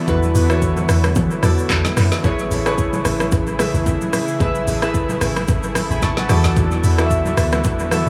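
Warm, up-front analog keys of pulse and sawtooth tones with chorus and dub echo, together with a thick, detuned, warbling pad pumping under sidechain, open this soulful, relaxed amapiano excerpt. They are joined at 0.1 s by a round, dark log drum bass, a layered electronic deep house kit (deep kick, woody snare, smooth hats, handclaps, rim clicks, shaker and dub echo) and faint damped congas, as the harmony moves from E7sus4 to Amaj7 and back within an echo-heavy digital ambience.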